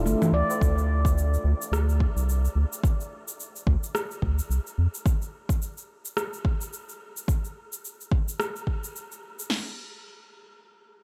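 A swung 108 BPM groove in 4/4 sets this hypnotic, earthy organic downtempo piece, with an up-front deep house kit entering at 0.6 s with a deep kick, punchy snare and crash, overdriven and re-recorded in a large room, layered over an overdriven electronic shaker, congas and rim click. The opening Gsus2 is coloured by bright, ringing handpan arpeggios through a low-pass filter and analog delay, a round, wave-folded analog bass with tube saturation and sidechain pumping that holds until 4.9 s, and a barely audible, low-tuned tabla. Light reverb surrounds the mix, and the cut comes from a longer piece.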